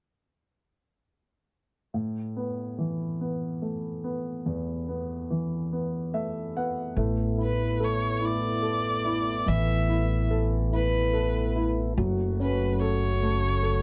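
A warm baby grand piano opens this tender, romantic pop excerpt in a straight 6/8 at 1.9 seconds and plays a fill at 5.7 seconds, before a woody, thumpy pizzicato upright bass and a clean tonewheel organ holding sustained chords through a slow rotary speaker join at 7.0 seconds, with a clear, smooth bowed violin entering soon after to carry the melody with vibrato, all captured in a dry, close 1970s-style studio sound with light reverb.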